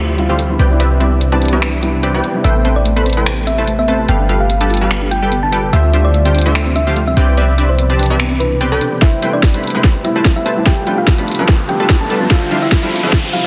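Bright and playful, this future bass excerpt moves with a half-time feel and a light swing on the sixteenths, cycling through lush extended chords such as Dm11, Cmaj9, Am9 and G7. A punchy, detuned supersaw stab carries the riff throughout, over a deep, boomy 808-style bass that sits up front, while an ethereal, airy pad holds sustained chords in the background, all breathing with sidechain pumping. A soft, felt-muted upright piano adds intimate accompaniment at the opening and returns from 9.2 seconds. From 2.4 seconds a tine-like, warbling synth pluck takes the melody with tape echo, joined until 9.0 seconds by a gentle, full-bodied pluck playing arpeggios. The trap kit brings a sharp snare, bright overdriven hats and finger snaps, and at 9.0 seconds a hard-clipped electronic kick enters as a build-up begins with a drum fill and filter sweeps, topped by a riser from 10.8 seconds. The mix is dense and heavily limited, set in a lush hall reverb.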